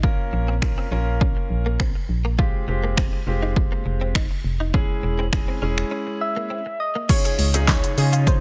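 A punchy, overdriven deep house drum kit drives this summery, upbeat dance-pop excerpt at 102 BPM in a straight 4/4, its up-front kick and fat, softly clipped snare joined by handclaps, finger snaps, hi-hat, shaker and crash cymbal. Beneath it, a hollow, organ-like FM bass with a dark, decaying tone pumps against the kick, while a concert grand piano with deep, open lows supplies sidechain-pumped accompaniment through chords moving from Bbm to Fmadd9 and Dbm/Fb. A bright, clean, direct-recorded electric guitar plays a compressed, picked riff with ensemble chorus. At 6.2 seconds a round, gentle, keys-like synth lead enters with the melody, colored by chorus, phaser, delay and vibrato, and a very quiet, lush unison pluck adds detuned, wave-folded arpeggios from 7.1 seconds as the harmony settles on Dbadd9. A faint, glassy, ethereal FM pad slips in at 7.4 seconds, all set in a digital ambience with a dense, heavily limited modern master.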